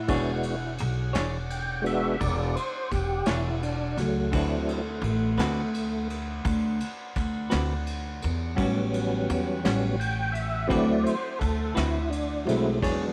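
A tonewheel organ solos from the opening moment of this slow blues excerpt, its clear, lightly overdriven sustained chords sitting up front with key click, chorus vibrato and a slow rotary speaker. The mood is swaggering and rollicking, moving at 57 BPM in 12/8 with a straight feel over E13, D13 and A13 chords. Beneath the organ, a woody pizzicato upright bass with steel strings holds the low end, while a clean, picked electric guitar adds tremolo-colored accompaniment. A vintage kit played with brushes gives kick, snare and dark cymbals a smooth, rolled-off quality. A mellow horn section with light vibrato sustains chords in the background, and light reverb with small room ambience frames the performance.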